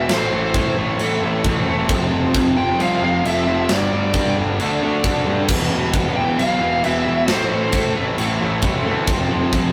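Aggressive and epic, this heavy metal excerpt at 134 BPM in a half-time feel pairs a dark, bluesy overdriven lead guitar melody, which drops out at 7.9 seconds, with two bright, compressed distorted rhythm guitars riffing in the background, a growly fuzz-picked bass, a tight, up-front drum kit with bright china and crash cymbals, and a lush, very quiet bowed string section sustaining chords through an Am, F, G, Dm, Em progression, all in a rough rehearsal-room sound with warm saturation and moderate reverb.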